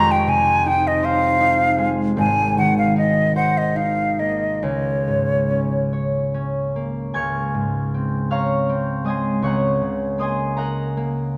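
Dreamy and pastoral, this rubato impressionist classical duo for flute and harp drifts in 6/8 at 44-54 BPM in Db major, cut from a longer piece. A hollow, airy concert flute, close-miked and up front with vibrato and a crisp attack, sings the melody between Db5 and Bb5 until 5.9 s. A fingerpicked, ringing concert harp spans F1 to Ab6 in the accompaniment, carrying on alone to 11.4 s in the moderate reverb of a scoring stage, as the harmony moves from Fm7 through Ab69 and Db5 to Dbmaj7 and Ebm7/Db.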